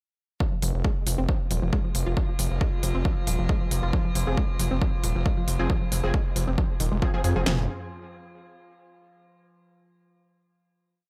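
A punchy four-on-the-floor kick, cracking snare and toms open this hypnotic, industrial peak-time techno piece beside a lush, detuned unison pluck riff sitting in the background under a filter sweep, soon joined by a gritty, saturated synth bass galloping in sixteenths up front, smooth overdriven electronic hi-hats, and an eerie, metallic inharmonic drone from 1.6 s, with thick, bright rave chord stabs arriving at 4.3 s, the synths and hats pumping against the kick, before the groove gives way to a final chord at 7.5 s in a dry hardware recording.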